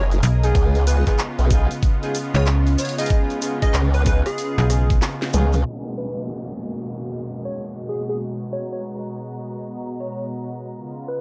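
Swung sixteenths drive this swaggering, gritty glitch hop excerpt, where a knocking kick, a kit with cracking snare and bright hats, a grainy tube shaker, a wobbling formant-sweep bass and a snappy, metallic slap-like FM bass power the drop under mellow horn stabs carrying vintage sampler grit, until a drum fill at 5.0 s gives way at 5.7 s to a filter-swept kit and a background downlifter, while a catchy, punchy unison lead with delay, a smooth analog pad and an ethereal, airy pad carry on through a dark digital ambience.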